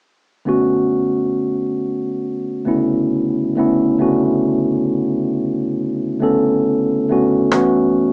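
Melancholic and reflective, this lo-fi hip hop excerpt rests on a mellow, clean tine electric piano sitting up front and swinging gently over Bm7 before shifting to A69 at 7.5 s, where a snappy acoustic cajon with snares adds a brief touch of small-room percussion until 7.8 s, all wrapped in moderate studio reverb and a cassette-tape, small-speaker sound.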